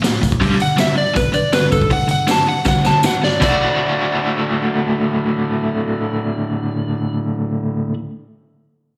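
Garage rock with a raw, swaggering mood, captured like a live gig through a club PA, this brief cut from a longer piece drives at 160 BPM in D major, its up-front overdriven guitar riff bright, picked and double-tracked, shimmering with tremolo and slapback echo across the full 7.9 seconds. A saturated, boomy-kicked drum kit with a rolled-off top and a jingly tambourine in the background both drop out around 3.5 seconds, after a drum fill, as the harmony moves from G5 to D. Meanwhile an electric slide guitar played with fingerpicks carries a slightly broken-up melody from 0.6 seconds, all set in a lush hall reverb.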